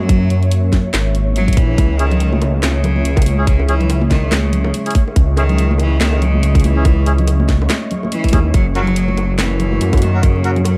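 Swung 16ths over a half-time 142 BPM groove in 4/4 drive this dark, meditative deep dubstep excerpt in C# dorian, where a tight, up-front electronic kick and a garage kit with handclaps, hi-hat and a cracking snare sit in studio reverb under a deep, rumbling, saturated detuned saw bass, while a bright, biting bowed cello with light vibrato carries the melody through dub echo over a moody chorused analog pad and an airy, wind-like noise texture in the background, joined at 2.0 s by reedy, nasal melodica stabs in dub echo and at 2.1 s by vintage, band-limited bongos and congas as the chords move from F# to C#m and back to F# at 8.5 s.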